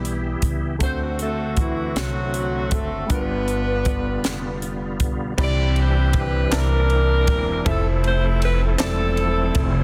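A breathy alto saxophone with vibrato and a trail of tape echo opens this short cut from a slow, soulful gospel piece in C major, sharing the melody with a bright saxophone section in 6/8 at 52 BPM. Underneath, a woody, thumpy upright bass sits up front, while a crisp fusion drum kit adds a punchy kick, a high-tuned snare and dark cymbals. A reedy tonewheel organ holds sustained chords through a slow rotary speaker and chorus vibrato, its key click audible, and a worn concert grand piano with short sustain stays in the background. The solo alto drops out at 4.6 seconds, leaving the section to carry the tune as the harmony moves from Cmaj7 through D7 and G7 into a second passage at 5.4 seconds built on Cmaj9, C13 and Fmaj7. Close, dry group handclaps join at 6.5 seconds, lifting the hopeful mood within a light room ambience and a dense, heavily limited modern master.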